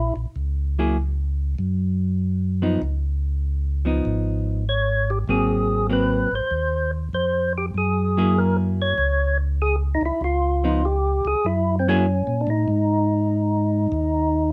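Soulful, bluesy jazz excerpt swinging at 98 BPM in 4/4, with a round, dark tonewheel organ carrying the bass line through a slow rotary speaker from the start and a clean, picked hollow-body electric guitar comping from 0.8 s to 12.1 s. After a brief touch at the very start, a fat, lightly overdriven percussive organ returns at 4.7 s to take the melody, its third-harmonic percussion and vibrato spinning through a slow rotary speaker. The harmony moves through Gb, Db9, Ab9 and Gb9 under light reverb, with all three parts sitting up front.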